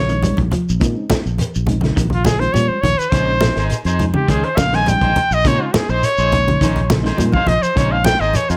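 Defiant and hypnotic, this short afrobeat excerpt at 104 BPM in Bb dorian rests on a single Bbm11 chord as a clear, up-front trumpet solos with vibrato over a fingered electric bass, a gritty, saturated breakbeat kit with a punchy kick, grainy shekere, hard-handed congas in the background, lush-chorused clean guitar arpeggios, a reedy electric piano with fast tremolo, and a twangy, slightly broken-up guitar whose stabs, bathed in spring reverb and tape echo, enter at 3.1 seconds.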